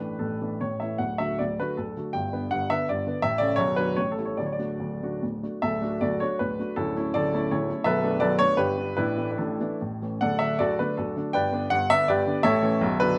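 A warm, up-front baby grand piano opens this brief excerpt of a proud, graceful romantic triple-time dance in D major, its dotted rhythms moving with rubato between 136 and 186 BPM across a span from deep bass to G5, captured by close, detailed microphones in light reverb, with a second section arriving at 5.6 seconds.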